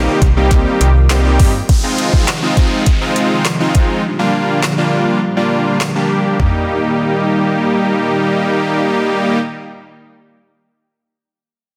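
Dance-pop at 102 BPM in Eb major, euphoric and carefree, where a fat, detuned sawtooth polysynth and a mellow, chorused organ-like string ensemble pump with sidechain over Cm7, Fm7 and Gm7 resolving to Eb, a snappy, slap-like FM bass drops out at 1.6 seconds, a smooth R&B kit with soft kick, woody snare and metallic hats runs until 6.5 seconds beside a faint, crisp group handclap, and an electronic downlifter sits in the background from 1.7 seconds, set in a lush hall reverb on a dense, heavily limited master.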